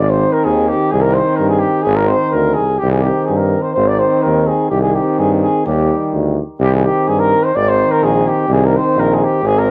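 Heard through the grain of a home cassette recording and a moderate spring reverb, this wild, exuberant Balkan brass band fragment in 2/4 is cut from a longer piece. A mellow cornet sits up front with the melody, its vibrato and soft attack giving it a roomy, slightly distant quality, while two euphoniums (one warm and set in the background, the other with a smooth top) fill in the accompaniment. A clear tuba, colored by transformer saturation, carries the bass as the harmony swings between Ab and Cm, touching Eb at 5.7 seconds.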